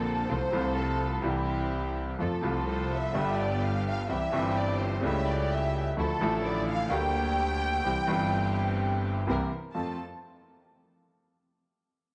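A violin section sits up front with a smooth, even, vibrato-rich sound, carrying the second line and taking a solo from 0.0 to 9.8 seconds in this passionate, melancholic tango cut from a longer piece. The tempo is 127 BPM in 4/4, in F major, with a rubato feel that lets the phrasing breathe. A clear baby grand piano, also up front, provides the accompaniment, moving through harmonies such as F/C, A7/C#, Dmadd9 and Gm/D before C7 resolves to F at 9.8 seconds, where a new section begins. Behind them, a string section plays soft-attack stabs sul tasto, giving a pure, floating tone set back in the mix and touched with slapback echo. A bowed double bass played by a single player adds an earthy, distant low end with light vibrato. The whole is placed in a small room with light reverb, giving an intimate studio feel.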